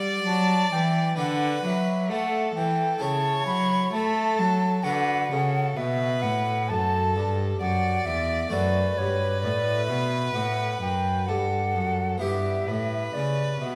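At a slow 65 BPM in 4/4, with a flexible rubato pulse, this serene, radiant baroque-style sonata movement with continuo unfolds over chords moving from Bm through D and A/C# toward Gmaj9/F# and Em/G. A rich, bowed violin sings the melody with vibrato and expressive portamento, while a mellow, hollow silver concert flute enters at 0.3 s with a pure, tongued second line. Beneath them, a brilliant, airy French-style harpsichord supplies plucked accompaniment, and a smooth, up-front cello anchors the bass, all set in a moderate recital hall reverb in a passage cut from a longer piece.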